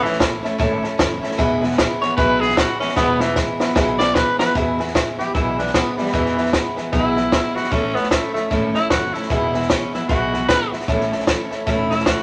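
A lightly swung eighth-note groove at 152 BPM in 4/4 drives this rowdy, retro rockabilly piece in E major, cut from a longer performance. Up front, a raspy tenor saxophone with vibrato and a gritty pop edge takes a solo over the opening 4.6 seconds. A compact cocktail drum kit, dry and natural with a high-tuned snare, punchy kick and hi-hat, plays a fill from 3.0 to 4.6 seconds, leading into the next section. A picked steel-string dreadnought acoustic guitar sits equally forward with a full-bodied, bright tone, while a brilliant upright piano accompanies in the background, and a thumpy pizzicato upright bass with gut strings gives a woody low end. The harmony moves between A and E, all set in a wet studio reverb with a 0.9-second decay.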